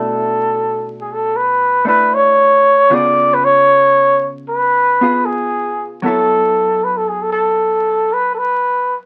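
Swung eighth notes in 4/4 move at an unhurried ballad pace through this short jazz fragment, cut from a longer piece, with an intimate, romantic mood. A breathy trumpet carries the melody up front as the soloist, its dark tone marked by vibrato and a smooth top. Beneath it, a clean, fingered hollow-body electric guitar supplies compressed, shadowy accompaniment at a much lower level. Both parts play together for the full nine seconds, moving through Bm11, C#7 and F#m7. Light reverb surrounds the pair, and the sound carries the crackle of a very old 78 rpm record.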